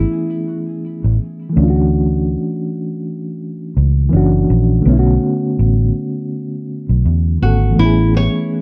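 A lazy, swung sixteenth-note groove in 4/4 sets a mellow, nostalgic lo-fi hip hop mood in this short cut from a longer piece. A reedy electric piano carries the accompaniment throughout, its medium tremolo heard through built-in speakers and softened by cassette tape character and a low-pass filter. Underneath, a vintage foam-muted fingered electric bass sits up front with a round, dark, amped tone until 8.3 seconds. A fingerpicked nylon-string guitar adds brief, full-bodied classical melody phrases at the opening and again from 7.4 seconds, with audible finger squeak and a filtered edge. The harmony drifts from Amaj9 through Dmaj9, F#7b13 and Bm9 before settling back on Amaj9, all wrapped in moderate studio reverb and a dark, warm production.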